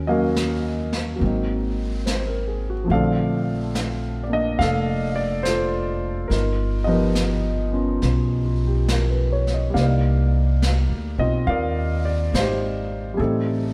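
A slow swing at 70 BPM in 4/4 carries this wistful, intimate jazz ballad in G minor, cut from a longer piece, with brushed snare and hi-hat joining at 0.4 s from a distant, roomy spot with a rolled-off top. Up front, a woody, thumpy gut-string upright bass plucks low lines while a concert grand with deep bass and audible action noise comps through rich chords, moving from Ebm7 and Ab9 to Bbmaj9, G7alt and Cm9. A moderate echo-chamber reverb places the trio further back in the room, lending a gentle, lingering glow to the 13.7-second passage.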